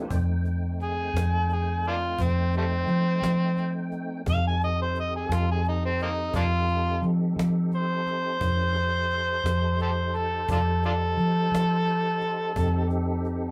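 A gritty, overdriven harmonica enters at 0.8 s with an up-front, jazz-style solo full of vibrato, scooped notes and tongue slaps over a soulful, rollicking slow blues in 12/8, backed by a dark, round, punchy foam-muted electric bass, a snappy close-miked cajon with snares, and clean tonewheel organ chords with key click, chorus vibrato and a slow rotary speaker, the band playing live together in a small room with wet reverb.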